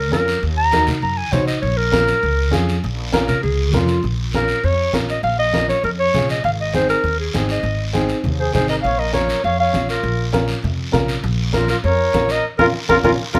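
A straight 4/4 cumbia groove at 200 BPM is carried by low-tuned, thick-skinned congas sitting in the background and a raspy, distant guiro, while a woody, up-front pizzicato upright bass anchors the Bb minor harmony. Fiery and passionate in mood, this cut from a longer piece opens on a mellow clarinet solo with vibrato, scooped notes and a jazz-inflected smooth top; the solo runs until about 4.0 seconds, and the clarinet carries the melody throughout. Underneath, a dark, worn upright piano, slightly detuned with audible action noise and long sustain, plays accompaniment through chords moving among Ebm, Bbm and Ab. At 8.4 seconds a breathy, whispered flugelhorn with a soft attack enters as an intimate second line. The band lands a closing accent at 12.4 seconds, all set in a moderate studio reverb and tuned slightly flat of standard pitch.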